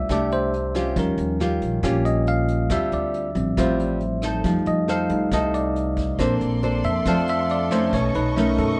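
A bell-like, bright tine electric piano takes the solo up front across this breezy, romantic bossa nova excerpt, its clean, direct tone floating over a dark, fingerpicked nylon-string guitar with audible finger squeak. A woody pizzicato upright bass and a vintage brush kit with a punchy kick, rim click and rolled-off top keep the groove close and dry in a natural studio room. At 6.2 seconds a lush violin section enters with smooth, bowed sustained chords and warm vibrato.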